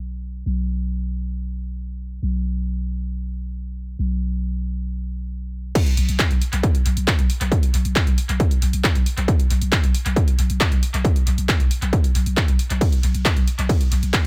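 A straight 4/4 pulse drives this industrial peak-time techno cut, which opens with a growling, buzzy 808-style bass alone, up front, overdriven and low-pass filtered, pumping against the sidechain. At the drop at 5.8 seconds, a heavy, layered electronic kick lands up front with a tape-warm, small-room character, joined by a punchy analog drum machine playing crash, ride, hi-hat and handclaps, its hats and cymbals pumping and trailed by analog delay. The mix stays dry on reverb yet echo-heavy, lending the driving section a tight, industrial edge.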